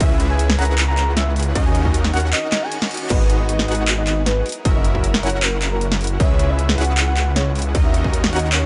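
A half-time groove with a light swing on the sixteenths drives this bittersweet, emotional future bass excerpt. A distorted electronic kick sits under an up-front dubstep kit with a huge snare, handclaps, bright hats and crash cymbal, both carrying a tape-warm sheen. Beneath them, a thick, chorused detuned saw bass pumps with the sidechain. A punchy supersaw stab riff with a filter sweep pumps alongside it. The soft, octave-layered synth lead sings the melody in a round, full-bodied yet dark tone, dressed in chorus, phaser, vibrato, sidechain pumping and dub echo. Far beneath, a very quiet bowed string section holds intense, close chords, and a lush unison pluck with a moving notch traces arpeggios through the C#m7, D#m7, G#m7 and F#7 changes. A brief break arrives at 2.3 seconds, where a faint electronic reverse cymbal sounds from 2.6 to 3.1 seconds, all set in a digital ambience.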